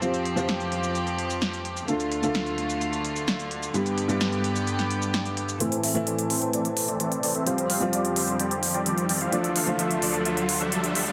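A dense, heavily limited mix in a lush hall carries this powerful, emotional festival progressive house excerpt at 129 BPM in A minor, where a dark, boxy baby grand piano with dub echo and a reedy, up-front string section hold the Fsus2–Dm–G–Am progression over a punchy, overdriven big-room drum kit of crisp hats, shaker and snare, until huge detuned supersaw chords enter at 5.6 seconds under a filter sweep as the build-up begins and a background riser joins at 6.9 seconds.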